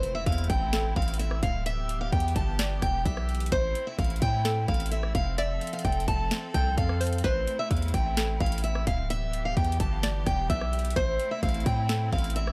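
A very quiet electronic impact opens this eerie, hard-hitting half-time trap cut from a longer piece at 129 BPM in A minor, where an up-front picked parlour steel-string acoustic guitar carries the melody through a low-pass filter and tape echo, a hollow, detuned square pluck with chorus and tape echo bounces in the background, a clear bowed symphonic string section with light vibrato holds chords, a punchy, heavy 808-style bass with a noise layer anchors the low end, and a trap kit of hard-clipped kick, sharp snare, rim click and metallic hats drives the beat, all set in a gritty, dry hardware sound with digital ambience over Am, Em and F until 12.5 seconds.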